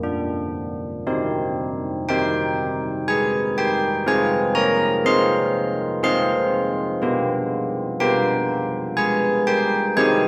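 Solo carillon bells sound from the first moment with a bronze, ringing tone, marked by a minor-third overtone and the knock of a worn iron clapper. This solemn, wintry classical fragment in C minor moves at a slow 61 BPM in 3/4. After a single opening note, the harmony settles on C minor at 1.1 seconds, then passes through F minor over C and a G seventh over B, with the bells ringing out in a reverberant scoring stage.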